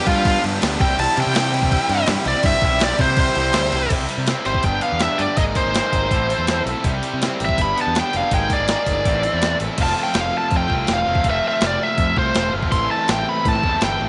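Indie rock at 164 BPM in C major, wistful yet upbeat, this excerpt opens with a biting, overdriven lead guitar soloing up front until 3.9 seconds and carrying the melody throughout. Beneath it, a fuzz guitar and a background overdriven guitar with lush chorus and tape echo drive riffs over a growling, punchy fingered bass and a thumpy, sampler-style 12-bit drum machine re-recorded in a large room. A dark, vintage string machine cello pad drifts in very quietly in two stretches, while crisp group handclaps sit barely audible between 0.6 and 3.6 seconds, as the chords move from G7 and Cmaj7 through Absus2 and Am to close on Fmaj7 and Am7.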